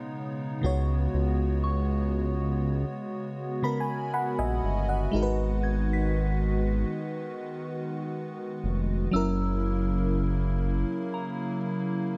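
Longing and late-night in mood, this slow contemporary R&B excerpt moves at 60 BPM in G# minor, with a lush, dreamy FM electric piano layered over a soft pad and a hollow, flute-like pad holding sustained chords, both treated with chorus. A smooth, nasal synth bass enters at 0.6 s up front, while a pure, gentle synth bell with chorus and delay drifts in the background from 1.6 s. The electric piano adds a fill at 3.1 s, and the harmony passes through B69, C#7sus4, G#m7 and F#7 inside a digital ambience.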